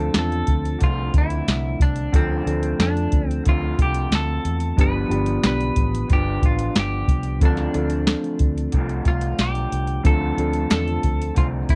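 Indie pop with a bedroom-pop hush, this wistful, mellow excerpt moves at 91 BPM in D dorian, with a clean, hollow-body semi-hollow electric guitar carrying the melody through lush chorus while a slightly broken-up electric guitar through a small old amp adds dark, lo-fi accompaniment with chorus and vibrato. A reedy, worn, slightly out-of-tune electric piano fills in the chords as they move from Dm7 to G7 and back, over a round, foam-muted fingered bass and an up-front analog rhythm box with a deep kick, crisp snare and metallic hats. A very quiet group handclap appears briefly at 10.7 seconds, and the dry mix has a cassette-tape character.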